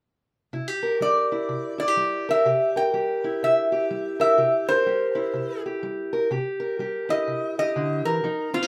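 Lightly reverberant, this short fragment of swaggering, rollicking acoustic country blues swings at 125 BPM in C mixolydian over a C7 chord, as a dark, boxy parlour-style steel-string acoustic guitar fingerpicks the accompaniment from 0.5 seconds and a bright, nasal, metallic resonator slide guitar, played with fingerpicks and a steel bar, carries the melody up front from 1.0 seconds.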